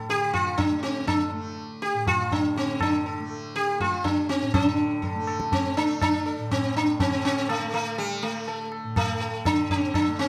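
Hindustani classical music in raga Malkauns on A, this brief excerpt moves at 122 BPM in a 3/4 metre with a straight feel, its mood solemn and introspective. The sitar carries the melody from the opening moment, up front and plectrum-plucked, its buzzing tone and sympathetic strings giving a shimmering, warm resonance across a range from G3 to A4. Beneath it, the tanpura sustains a softly plucked drone between A2 and A3, bright and buzzing, sitting well back in the balance. The tabla joins at 0.1 seconds, high-tuned and ringing, with a close and dry presence. The instruments are tuned to A4 = 444 Hz and placed in a moderate recital hall reverb, and the passage shifts into a new section at 4.5 seconds before the cut at 10.3 seconds.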